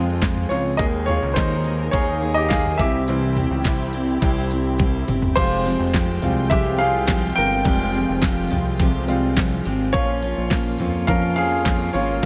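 A clear, polished baby grand piano sits up front in this driving, earnest piano-driven pop excerpt, carrying solo lines over its own accompaniment at 105 BPM in a straight 4/4. A picked steel-string acoustic guitar with the warm body of a dreadnought plays a riff, complete with audible finger squeaks, while a fat analog bass built on detuned sawtooth tones adds a saturated, plucky low end with a fast attack. Dark, lush bowed strings hold sustained chords with vibrato and a soft attack in the background. An electronic, layered pop drum kit enters almost at once with a knocking kick, fat snare, crisp hats, handclaps, toms and crash, and a drum fill from 4.8 s leads into the second section at 5.4 s, where the music settles into F minor. The harmony moves from Fm through Ebsus4 and C to Fmadd9 and Bbm, all framed by light reverb and a small-room ambience.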